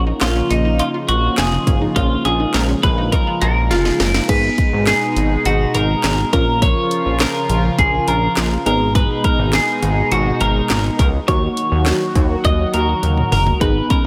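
A straight 4/4 house beat at 103 BPM drives this melancholic, nocturnal synth-pop piece in Eb minor, with a punchy kick, cracking snare, warm hi-hats, handclaps, toms and crash, and drum fills at 3.7 and 13.0 seconds. Up front, a bright, twangy twelve-string electric guitar carries the melody with delay over a glossy, retro chorused synth bass with filter sweeps. A dark FM electric piano and a swirling, warbling analog pad with phaser hold the Bbm, Abmadd9 and Ebm chords, while a lush, detuned unison pluck plays delayed arpeggios in the background, stopping at 4.3 seconds and returning briefly near the end, within a light digital ambience.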